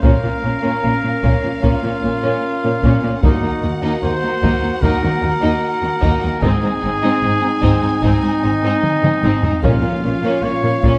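A taiko ensemble struck with heavy sticks drives this dramatic, relentless cut from an epic orchestral film score, moving at 75 BPM in 4/4 in Bb minor from the very first beat. Above it, a lush violin section carries the melody high with a smooth top and soft attack, while a second, darker and more distant violin line sits lower, and a focused, close viola section adds accompaniment in the background. Mellow French horns hold sustained chords with light vibrato, and a clear, vintage-toned solo trumpet cuts through with stabs. Underneath, bowed cellos and a woody double bass section anchor the bass line, both set back in the mix. The harmony moves from Bb minor through Eb minor and Ab before returning to Bb minor, and a drum fill at 8.8 seconds leads into a round timpani note on Bb2, played with soft mallets, entering at 9.6 seconds. A moderate scoring-stage reverb surrounds the orchestra.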